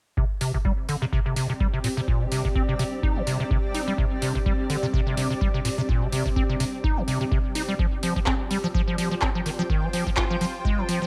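A driving 4/4 groove with a light swing on the sixteenths anchors this raw acid house excerpt, where a deep, tape-warm electronic kick sits up front beside a booming analog drum machine's handclaps and metallic hats, a squelchy, resonant square-wave acid bass riff with fast-attack filter plucks carries tube saturation, subtle chorus and tape echo, and a cloudy, detuned granular pad drifts in at 0.8 seconds with sidechain pumping, all captured on cassette with a light room reverb.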